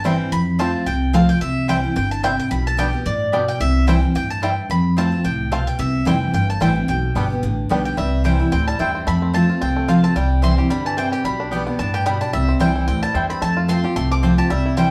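Joyful and lively, this swung bluegrass excerpt at 220 BPM sets a bright, double-strung mandolin melody beside a mellow, twangy banjo melody played with fingerpicks, over an up-front, full-bodied jumbo steel-string guitar picking its accompaniment through a repeated F, C and G/B progression, a woody pizzicato upright bass, and a second, background mandolin adding stabs through analog delay, all heard from further back in a wet studio room.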